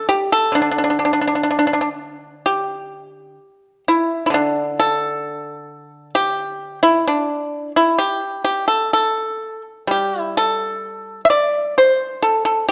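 A solo pipa sits up front in this short passage of Chinese traditional music, its bright, percussive tone shaped by fingerpicks and heard as a dry, close sound. The mood is pastoral and flowing, moving in a rubato feel around 64 BPM in 2/4, in a D shang mode. The pipa ranges from D3 up to E5 and plays alone for the full 12.7 seconds, with an opening passage giving way to a new section at 2.4 seconds. A moderate recital hall reverb surrounds the instrument, while the overall production leans dark and warm. Cut from a longer piece, it offers a brief glimpse of solo plucked-string playing.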